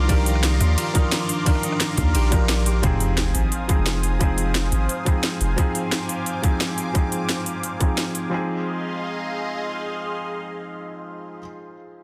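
A felt-muted upright piano with audible action noise, its mellow tone run through a low-pass filter and tape echo, carries this dreamy, rolling liquid drum and bass excerpt from the first moment. Sounding alongside it from the start are a lush, detuned unison pad pumping under sidechain with chorus and phaser, a ringing harp in the background, a deep, sine-toned 808-style bass, a tight electronic kick and a kit of cracking snare, crisp hats, ride and rim click. At 2.8 seconds the harmony moves from Cm11 to Fm7 as a background sub drop hits and a filter sweep runs over the piano; the harp stops at 5.0 seconds and the drums fall away by 8.2 seconds, leaving piano and pad in light reverb within a dense, heavily limited master.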